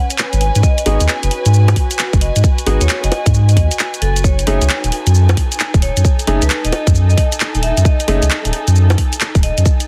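A swung two-step garage groove at 133 BPM, with a tight, up-front electronic kick and a layered kit of bongos, handclaps, hi-hat, rim click and shaker, gives this skippy, bouncy UK garage excerpt in F# dorian its drive. A deep, thick sub bass with tube saturation sits prominently beneath, while a dark, bowed string section with light vibrato and sidechain pumping forms a soft, intimate backdrop. Bright, ringing vibraphone lines and clear, boxy baby grand piano stabs, both with delay, move from G#m7 to F#m69 at 4.2 seconds over light room ambience, a dense, heavily limited master and vinyl crackle.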